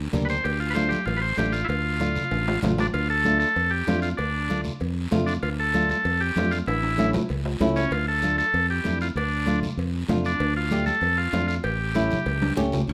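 This cumbia excerpt has a fiery, passionate Latin drive at 193 BPM in a straight 4/4, set in D harmonic minor. A buzzy, vintage combo organ carries the melody up front and takes a clean solo over the groove through the opening 2.9 seconds. Beneath it, a growly, bright fingered electric bass sits direct and amped, while a fingerpicked flamenco guitar adds warm acoustic accompaniment. Thick-skinned congas struck with hard hands, ringing metal-shell cowbell and timbales, and a raspy guiro sit further back in the mix, with drum fills marking turns such as the one at 6.7 seconds. The harmony moves between D minor and A before landing on A7, all under a light reverb.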